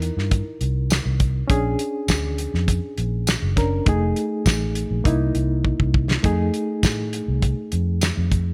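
A dry, close-sounding cut from a longer piece of laid-back, soulful straight-eighth soul blues, built on sharp-nine dominant chords moving from C7#9 through Bb7#9 and F7#9. A reedy electric piano with a fast tremolo plays the accompaniment over a dark, round, foam-muted fingered electric bass, both sitting up front. A damped 70s acoustic kit with a fat snare, tight kick, hi-hat and tambourine drives it along, with a drum fill at 5.6 seconds leading into the return of the opening section at 6.2 seconds.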